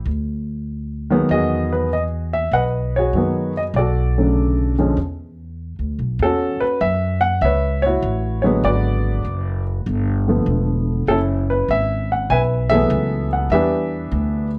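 Jazz piano trio music with a sophisticated, swinging mood, built around a baby grand piano carrying the melody over a pizzicato upright bass, both up front for the whole 14.6 seconds of this excerpt. The piano sounds intimate and natural, with short sustain and audible action noise, while the gut-string bass is woody and thumpy. Around 6.2 seconds the harmony moves into a new section of rich extended chords, all wrapped in light reverb and a dark, warm production.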